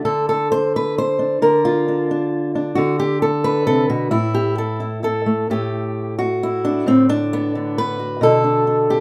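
Melancholic and intimate, this short folk excerpt features a solo fingerpicked steel-string acoustic guitar in three-four with a rubato feel, its warm tone placed up front with light reverb. Opening with an unaccompanied line before settling onto D5 and A5 chords, the guitar shifts into a second section around 5.5 seconds, moving through D/A to Bm7 as the passage breaks off.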